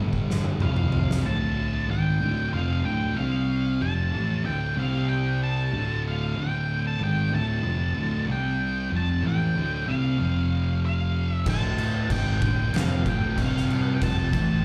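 Captured live through a club's PA, this heavy, ominous stoner and doom metal excerpt has a fairly dry live sound. It opens with an oversized, low-tuned acoustic drum kit playing a fill on crash, kick, snare and toms, with a fat snare and punchy kick sitting up front in a big, pumping room. Two picked fuzz guitars carry the riff throughout: one compressed and set in the background, the other thicker and treated with slapback echo. Beneath them, an amped, overdriven electric bass adds a punchy low end. From 0.6 seconds, a dark octave-fuzz lead guitar plays a high melody coated in slapback and tape echo. The drums fall away after the opening fill and return at 11.5 seconds, saturated and gritty, as the riff churns between D minor and power chords.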